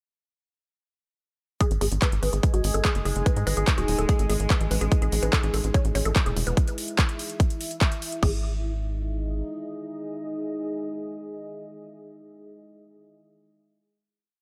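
Set in a light reverb, this intense, psychedelic trance piece runs at 145 BPM in a straight 4/4. An overdriven, punchy electronic kick sits up front with a four-on-the-floor pulse, while an overdriven dance kit adds metallic hats, handclaps and crash, and a tight, rolling sixteenth-note sequencer bass of sawtooth and square waves with ring modulation drives underneath. A woody, wave-folded pluck plays an accented acid line in a 12-step loop that drifts against the bar, treated with chorus, digital delay and sidechain pumping, as an overtone-sweeping drone holds a high note in the background and a deep, moody ambient pad of detuned unison saws enters at 3.1 s with slowly shifting chords, outlasting the groove's end at 8.2 s to carry the final chord until 12.0 s.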